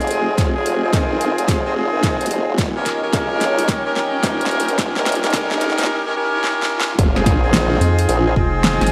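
Clear, punchy horn stabs with digital delay open this swaggering, playful glitch hop excerpt at 109 BPM in F minor, over a saturated formant-sweep wobble bass, a breathy, airy pad with phaser in the background, and a drum kit of metallic hats and a fat snare with gated reverb, joined by a layered electronic kick from 0.4 s and a very quiet riser and impact from 2.0 s, as a filter-swept build-up over Fm7 and Eb7 drops at 7.0 s, with a rubbery, bouncy square bass up front arriving at 7.8 s, the whole mix carrying a bright 1980s-style digital sheen with vinyl crackle and lush hall reverb.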